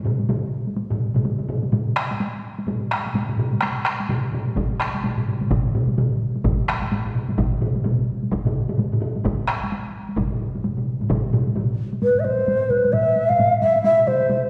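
Heavy-stick taiko ensembles open this ceremonial, powerful Japanese traditional drum piece at 128 BPM in 4/4 with swung sixteenths, joined almost at once by close, dry solo taiko drums and, from 4.6 s to 11.2 s, by a further ensemble, the tempo speeding up throughout inside a wet, hall-like reverb until an airy, mellow end-blown bamboo shakuhachi with vibrato and a soft attack enters at 12.0 s to carry an expressive melody to the close of this section cut from a longer piece.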